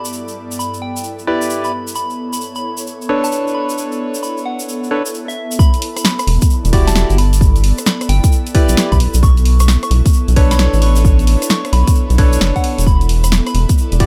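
A skippy, swung two-step garage groove with a moody air opens on a soft, pure synth bell melody, a grainy tube shaker and a breathy pad with sidechain pumping, joined at 1.3 seconds by hollow, chorused organ stabs, before the drop at 5.6 seconds brings a punchy, up-front electronic kick, a house kit of filtered hi-hat, rim click and snare, and, from 6.3 seconds, a rubbery, dark square bass with tube saturation, all heard in a dry mix cut from a longer piece.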